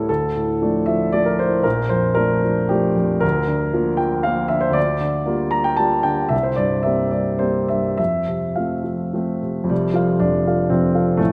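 Passionate and stormy, this brief romantic character piece for solo concert grand piano moves in a rubato 3/4 at roughly 100-124 BPM, settling into F major from 3.2 s. The piano sits up front with a warm tone and deep bass, spanning F1 to Bb5 as the harmony travels from D minor through Bb major seventh and G minor seventh to an open C fifth before arriving on F at 8.0 s. A wet concert hall reverb with a 2.0-second decay surrounds it, and a new passage begins at 9.7 s just before this excerpt of a longer work breaks off.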